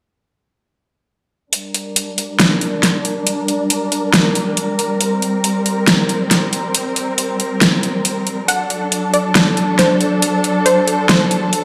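A half-time 4/4 groove drives this heavy, menacing wobble dubstep excerpt, as an overdriven, up-front electronic kit with a huge snare and metallic hi-hats arrives at 1.5 s alongside a veiled, con sordino string section holding bowed chords with vibrato under a low-pass filter sweep. At 8.5 s, as the harmony moves from Gm to D, a punchy, detuned sawtooth unison pluck enters with a melody trailed by delay. The whole mix sits in a lush hall reverb, sounding as if played on a big sound system in a bare room.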